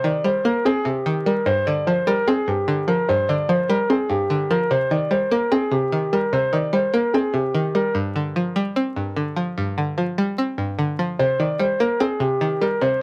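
A mellow, dark baby grand piano carries the melody up front with long sustain, low-pass filtering and analog delay, falling silent at 7.9 seconds and returning at 11.2, while a twangy, string-like resonator pluck with a fast attack, filter sweep, chorus and cassette-tape grit holds the accompaniment throughout this brooding half-time hip hop excerpt at 148 BPM in C minor, moving between Cm7 and G7sus4 under light reverb and vinyl crackle that give it a homemade feel.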